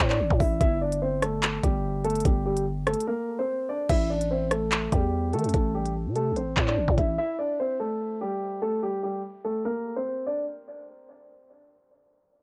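This dry home cassette recording has a muffled, low-passed sound, and a filter sweep runs through its middle stretch. It is a menacing, cold drill hip hop excerpt at 146 BPM in 4/4 with a half-time feel, moving between A minor and G5. A dark, mellow concert grand piano carries the melody with short sustain and a vintage cassette tape tone touched by tape echo. A growling, buzzy 808-style bass with a fast, decaying attack sits up front, and a produced electronic drill kit adds a knocking kick, crisp hi-hats, handclaps, rim clicks and crash cymbal with its own tape colour. After a break at 3.1 seconds, the drums carry on until 7.1 seconds and the bass until 7.2 seconds, and the piano plays alone until 10.4 seconds.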